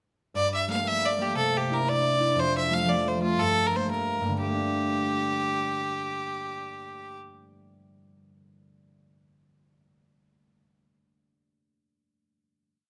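A concert harp opens the piece at 0.3 seconds, its warm, ringing, thumb-plucked bass notes and chord figures setting a driving pulse for a dark, lively Celtic jig in G dorian at 118 BPM in 6/8. A clear, nasal, earthy fiddle enters almost at once, close and up front with light vibrato, bowing a motif-based melody in song-like phrases over chords that move through Gmadd9, Cadd9 and Fadd9 before returning home. The final chord arrives at 4.4 seconds, and after the fiddle finishes at 7.2 seconds, the harp carries on until 8.2 seconds in a moderate studio reverb.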